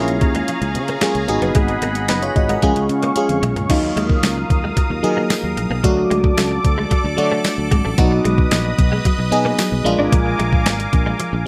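This glossy, romantic 1980s-style pop cut opens on a glassy, bell-like FM electric piano treated with chorus and phaser, laid over a bright, airy sawtooth pad with a resonant, detuned shimmer and its own chorus. A compressed, clean electric guitar sits in the background, playing a picked riff through ensemble chorus and digital delay, while a growly, punchy fretless bass sustains beneath. A thumpy, fat-snared 12-bit drum machine sits up front at a straight 112 BPM in 4/4, using kick, snare, hi-hat, toms and crash. A drum fill at 3.2 seconds leads into a new section at 3.7 seconds, where the harmony moves from C#6 and G#m7 to D#madd9, D, B and A#7. A jingly, very quiet tambourine joins at 4.2 seconds, and a moderate studio ambience gives the whole excerpt a polished, romantic sheen.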